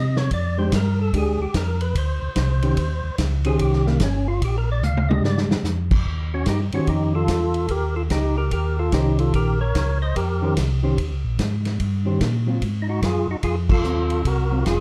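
A fat, lightly overdriven percussive tonewheel organ solos over the opening 6.1 seconds with slow rotary swirl and plate reverb in this greasy, bluesy soul jazz organ trio excerpt, swinging at 146 BPM in Eb mixolydian, while a round, mellow second tonewheel organ with chorus vibrato carries the bass line, a hollow-body jazz guitar adds dark, clean fingered accompaniment, and a punchy vintage drum kit with a rolled-off top plays a fill at 4.8 seconds and joins a band accent at 13.6 seconds.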